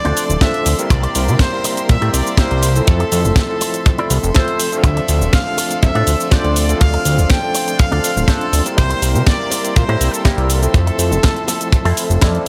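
Nu-disco with a cosmic, sleek mood, this excerpt rides a straight 4/4 pulse over a Dm7, C7 and Fmaj7 progression. A bright, tight trumpet section carries the melody with light vibrato and a dub echo trailing its phrases, while a barky, overdriven tine electric piano plays accompaniment through a combo amp with fast tremolo. Beneath them, a rich, earthy chamber string section holds sustained bowed chords in the background, pumping with the sidechain, and a dark, clean electric guitar with an envelope filter and analog chorus repeats a fingered riff. A fat, detuned sawtooth analog bass sits up front with a saturated filter pluck and its own sidechain pumping. The tight acoustic kick drum enters at 0.4 seconds, and a layered electronic house kit adds hi-hat, shaker and a cracking, tape-warm snare, all set in a small room ambience.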